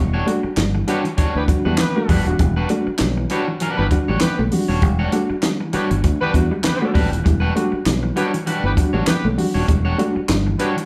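A driving 99 BPM funk groove in 4/4 with a swung sixteenth feel, set in E dorian on an Em9 chord, this short cut from a longer piece has a compact, dry cocktail kit with punchy kick, high-tuned snare, hi-hat and handclaps up front, very quiet low-tuned congas, a growly fingered bass, a dark, compressed guitar riff in the background, barky overdriven electric piano stabs with fast tremolo, a twangy, slightly broken-up guitar with spring reverb, and a tight, vintage horn section entering at 0.9 s on a second line, all captured as a live band in one large studio room.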